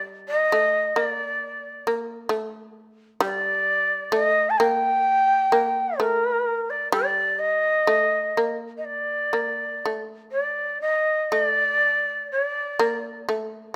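Close, detailed microphones and light reverb frame this calm, austere fragment of Japanese traditional chamber music in D miyako bushi, drifting freely at around 60-68 BPM, where a breathy, bamboo-toned shakuhachi carries the melody with a crisp, chiffy attack and straight tone from 0.3 seconds while a bright, buzzing, plectrum-plucked shamisen supplies a percussive second line from the very start.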